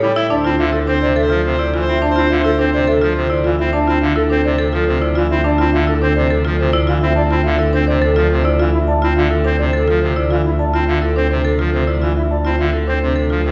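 Heard from further back in a reverberant recital hall with a dulled top end, this meditative yet urgent minimalist pattern piece in 3/4 sets a metallic, ringing vibraphone melody over bright, woody marimba and pure, crisp baroque flute arpeggios, a brassy pipe organ trumpet stop in baroque voicing, and a rich, bowed double bass up front, while a clear soprano saxophone sings a brief second line that stops at 3.5 seconds.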